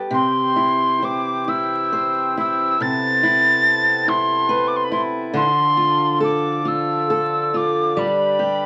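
Fingerpicked steel-string acoustic guitar and a reedy, full accordion holding sustained chords open this haunting, mournful Celtic slow air in A minor at a rubato 46 BPM in 6/8, joined at 0.1 seconds by an airy, hollow tin whistle carrying the melody up front with vibrato and tongued chiff over chords moving from C through Amadd9/C and Dm to G, all set in a moderate club reverb with vinyl crackle in this short cut from a longer piece.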